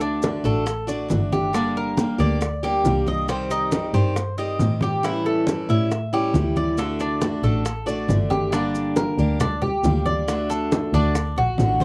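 A dry, close recording with a 1970s studio character frames this short cut from a longer Cuban son and guajira piece, nostalgic and sultry at 137 BPM in 4/4 with a straight feel, in G harmonic minor. Up front, a picked steel-string acoustic guitar with a boxy parlour tone and audible finger squeak carries the accompaniment, while a metallic Cuban tres with double strings, some doubled at the octave, spins arpeggios above it. Beneath them a muted double bass, bowed con sordino by one player with vibrato, adds a dark, veiled low line. Congas with a thin skin and low tuning are struck with hard hands and sound band-limited and vintage, as tight, high-tuned bongos and grainy maracas sit in the background. The harmony moves through D, Gm, Cm, A7 and back to D before the passage turns at 8.5 seconds to a closing move from Gm to D.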